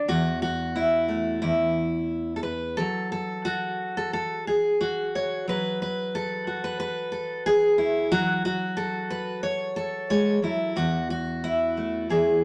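A loose, rubato pulse around 90 BPM in 4/4 carries this pastoral, nostalgic folk excerpt, where a lone fingerpicked steel-string jumbo acoustic guitar, bright and full-bodied with audible finger squeak, sits up front in light reverb, ranging from E2 to C#5 as it moves from A5/E through a chordless stretch to F#m at 8.1 seconds and settles on Esus4 at 10.8 seconds.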